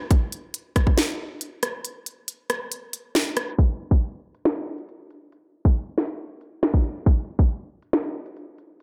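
Hip hop in a menacing, dark vein, this excerpt from a longer piece runs at 138 BPM in 4/4 with a half-time feel. The only part is an electronic drill drum kit, up front in the mix, built from hi-hat, kick drum, rim click and snare drum, and it plays from 0.1 to 8.8 s. Its kick is hard-clipped, its snare sharp and its hats crisp, with the kit re-recorded in a large room. A break arrives at 1.8 s within the opening section, and a second section begins at 3.6 s, carried by a filter sweep through to the close. The recording sits in light reverb under a low-pass filter.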